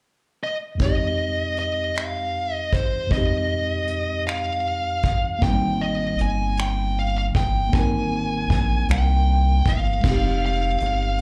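In a slow, straight 6/8 at 52 BPM, a brush drum kit with dark cymbals, finger snaps and a tight kick joins at 0.8 seconds beneath a worn, slightly out-of-tune tine electric piano, both shaping a sultry, yearning F minor R&B groove that moves from Fm9 to Abmaj9. Up front, a high-gain lead guitar carries the distorted, picked melody with slapback echo from 0.4 seconds, while a rubbery, nasal square-wave bass enters at 5.4 seconds and sits loudest in the mix. The cut sounds like a live club gig heard through the venue's PA, with a brief new section returning to Fm9 near its end.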